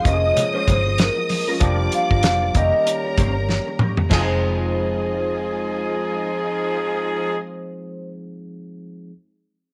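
A ringing, soft-mallet vibraphone carries the melody in this bittersweet, cinematic excerpt of lush 1970s-style soul in F minor at 96 BPM with a swung sixteenth feel, set over a barky, lightly overdriven tine electric piano, a distant, vibrato-rich violin section with slapback echo as a second line, a dark, compressed guitar riff with ensemble chorus sitting in the background, a round, foam-muted bass with transformer saturation, a fat-snared soul drum kit that plays a fill at 3.5 s and stops at 4.3 s, very quiet damped congas, and a tight, up-front horn section that adds stabs from 4.1 s.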